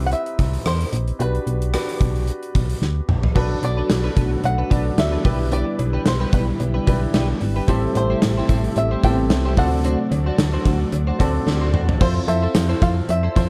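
1980s-style pop at 111 BPM in G major, glossy and nostalgic, with a light swing on the sixteenths and a fragment cut from a longer piece. A twangy, fingerpicked bluegrass banjo carries the melody with a slapback echo, over a clear grand piano whose action noise is audible and a punchy, round FM bass sitting up front. The gated 80s drum kit drives from the start with bright cymbals, a tight kick, toms, rim click and tambourine in a polished stone-room sound, with fills at 2.8 and 11.5 seconds. At 3.4 seconds a lush string machine spreads sustained chords in the background, joined by a clean, compressed electric guitar riff with chorus and slapback echo, very quiet, mellow synth brass stabs and a faint metallic cowbell. The strings and brass drop out at 12.0 seconds as the harmony moves to Fmaj7, and the mix stays dry with little reverb.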